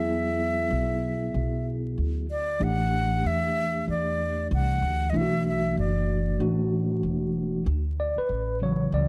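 A breathy, close-miked concert flute carries the melody with a soft attack and straight tone until 6.4 seconds over a mellow, clean tine electric piano and a woody pizzicato upright bass in this cool jazz-hop piece at 95 BPM in D major with a swung 16th feel, before the electric piano takes a solo from 7.7 seconds, all set in a small-room echo-chamber reverb with a dark, warm production and vinyl crackle, cut from a longer piece.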